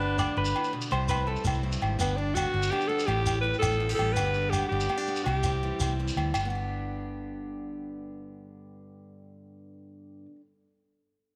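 A raspy, gritty alto saxophone sits up front with the melody, singing with a light vibrato in pop style until 5.9 seconds. This sunny, carefree highlife guitar band excerpt moves in 12/8 over G, C and A minor seventh chords. A picked steel-string acoustic guitar supplies warm accompaniment throughout, while a clean, compressed electric guitar plays brief arpeggios with slapback echo that stop at 1.4 seconds. Underneath, a dark, round, foam-muted electric bass punches up front, and close, dry agogo bells ring beside a grainy, mellow shekere heard from a distance, both percussion parts dropping out around 6.4 seconds. A moderate echo chamber reverb gives the band a roomy glow as the music passes into a second section.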